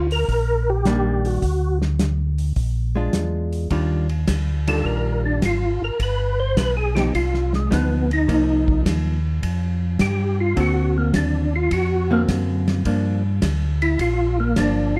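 A swung 4/4 groove at 105 BPM, with eighths swinging at 69%, drives this bluesy, greasy soul jazz organ trio, cut from a longer piece and settling into Eb major from 3.7 s. The acoustic drum kit sits in a small room, smooth in character, with a punchy kick, a medium-tuned snare, hi-hat and ride cymbal, its cymbals dark. A mellow tonewheel organ holds down the bass line up front, lightly overdriven with chorus vibrato and a slow rotary speaker. A clean, compressed hollow-body archtop guitar, picked and amplified, adds accompaniment from 0.9 s. The melody belongs to a second tonewheel organ, round and percussive with third harmonic percussion, chorus vibrato and slow rotary, which takes a solo from 3.7 s to the close, as the harmony moves through Ebmaj9, G7b13, Cm7 and D7alt to Gm7 in light reverb.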